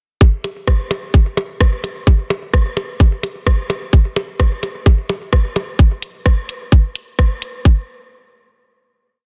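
Techno with a cool, sparse mood and a 16th-note swing, built on a tight, overdriven electronic kick playing four-on-the-floor up front, joined by programmed closed hi-hats and rim clicks from an overdriven garage kit, with tape-warm percussion blips echoing through delay in cross rhythm until 5.7 seconds, all in a dry, dense, heavily limited mix that closes on a final hit at 7.7 seconds.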